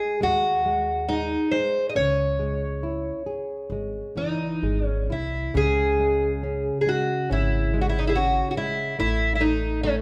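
A fado-style ballad in C# harmonic minor, this short excerpt moves at a slow, rubato 63-72 BPM in 4/4 with a longing, passionate mood. A fingerpicked twelve-string acoustic guitar carries the melody up front with a shimmering, octave-doubled tone, while a thumb-plucked nylon-string guitar supplies classical accompaniment complete with audible finger squeak, and a pizzicato upright bass with steel strings adds a woody low end from 0.2 seconds. The trio sits in a moderate recital hall reverb, with the harmony moving through G#5, C#m, C#5 and A5 chords across two statements of the same section, the second beginning at 5.6 seconds.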